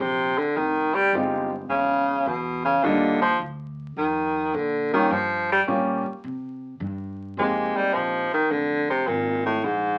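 A swinging 4/4 at 106 BPM carries this brief small-group swing and bop fragment, where a clear, forceful baritone saxophone solos throughout with vibrato and scooped notes, sounding punchy yet roomy, over woody, thumpy pizzicato upright bass on gut strings and a natural baby grand piano that comps from 1.1 to 8.3 seconds, all set in a wet club ambience and coloured by the crackle of a very old 78 rpm record.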